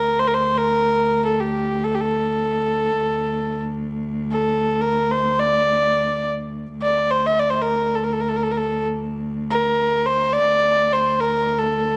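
From the first moment, a single bowed kamancheh carries the melody up front over a low D drone held by one bowed cello, the two sounding together for the whole 12 seconds of this excerpt from a longer Persian modal piece. The music unfolds in free time in dastgah homayun on D, tuned to A4 = 441 Hz, with a stately yet passionate mood. The kamancheh's tone is nasal, earthy and a little boxy, shaped by light vibrato and portamento as its line moves within a range from G4 to Eb5+45c. Beneath it, the cello's drone on D2 is smooth and even, rich with vibrato and placed close, sitting at a lower level than the melody. A moderate recital hall reverb of about 1.8 seconds surrounds the duo.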